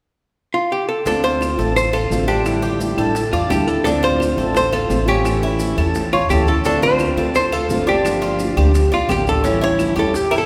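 Nostalgic and sultry, this short excerpt from a longer piece is Cuban son and guajira in D minor, moving at a brisk 172 BPM in a straight 4/4. A miked, amplified archtop guitar carries the melody with a dark, clean, hollow-body tone, picked and compressed, sitting up front after it enters alone at 0.5 seconds. At 1.1 seconds the band arrives: a fingerpicked, plugged-in steel-string acoustic guitar plays warm accompaniment, a bright Cuban tres adds metallic arpeggios from its doubled strings, and a woody, thumpy upright bass with gut strings sounds pizzicato and up front. Round, low-tuned bongos sit very quietly beneath alongside close, grainy, mellow maracas, joined at 1.4 seconds by saturated claves. The harmony cycles through Dm7, A7sus4, A, Gm7 and A7, all set in the long, wet reverb of a church or concert hall.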